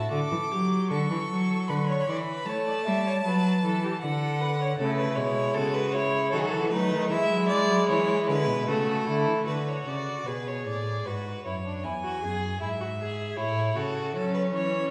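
Heard from further back in a reverberant recital hall, this lively, elegant baroque-style fugue for string quartet in D major moves at 77 BPM in 3/4, with a clear, focused first violin carrying the melody up front over a rich, expressive second violin gliding with portamento, a smooth, even viola heard from 4.8 to 9.5 s and again from 14.2 s, and a cello bass up front, all four bowed with vibrato, in a passage cut from a longer piece.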